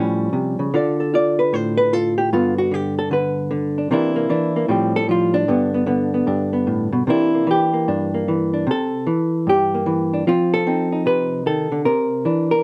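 A lone hollow-body electric jazz guitar opens the clip, its dark, clean tone fingered and compressed, sitting up front in a room with light reverb. This is solo jazz at a brisk 151 BPM in 4/4, with the eighth notes swung to give a playful lilt in C major. The guitar covers a range from G2 to D5, carrying the whole performance by itself as it moves through an altered A7 into Dm and G before settling on C9, F6/9 over A and Gadd9. At 7.1 seconds the tune shifts into a new passage built on C9 and F7, landing back on C9 near 11.8 seconds. The mood stays warm and good-humoured throughout this short cut from a longer piece.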